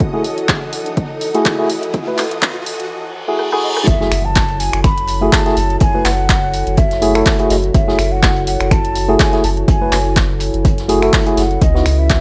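Deep house at 124 BPM in F# dorian with a 16th-note swing, deep and smooth, opening on a build-up where a dark, detuned analog pad with sidechain pumping, a blurred granular cloud pad and shimmering string-machine violins sit behind clean tine electric piano stabs with tape echo, a punchy up-front kick and an overdriven analog drum machine of snaps, claps, hi-hat and rim click, while a filter sweep, riser and reverse cymbal lead into a drum fill. A breathy, hollow concert flute with tape echo enters at 3.6 s to carry the melody, and at 3.9 s the drop lands with an electronic impact, a round sine sub bass and a very quiet vintage kit of hi-hat and snare. The harmony holds on F#m9 before turning to C#m11 at 11.6 s, all under light reverb, in a passage cut from a longer piece.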